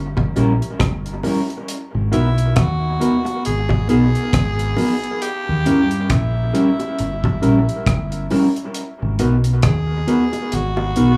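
Bittersweet and smooth, this slow lovers rock reggae passage in G# minor sits at 68 BPM in 4/4, with a lazy 16th-note swing, and is cut from a longer piece. A deep dub fingered electric bass opens at 0.0 s and holds the front of the mix with a dark, round, amped tone, joined almost at once by a dry, acoustic reggae drum kit whose tight kick, hi-hat and rim click also sit up front. A clean, fingered electric guitar adds mellow stabs through dub echo, while a worn, slightly out-of-tune tine electric piano lays down mellow accompaniment in the background with its own dub echo. Low-tuned bongos played with soft hands add a close, rounded patter far back in the mix, also trailing dub echo. At 2.1 s a raspy tenor saxophone takes the solo melody, gritty and forceful yet with a smooth top and light vibrato, its tape echo set in a small room reverb over a G#m7 that moves to a rootless D#7b9 and back to G#m7.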